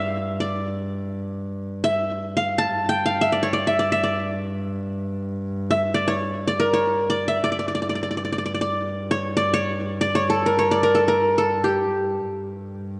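From the first moment, a qanun and a bowed double bass sound together in this melancholic, hypnotic fragment of Turkish makam music, cut from a longer piece and unfolding in free time in makam nikriz on G, tuned to A4 = 439 Hz. Played with fingerpicks and sitting up front, the acoustic qanun carries the melody between G4 and A5, its triple strings giving a bright-edged tone that an analog delay trails behind. Beneath it, a single double bass player, placed close, holds a drone on G2 with a soft attack and an airy, nasal, floating quality. A wet plate reverb with a 2.8-second decay soaks the mix in a dreamy haze. The qanun line ends at 12.9 s, and the bass drone sustains to 13.0 s.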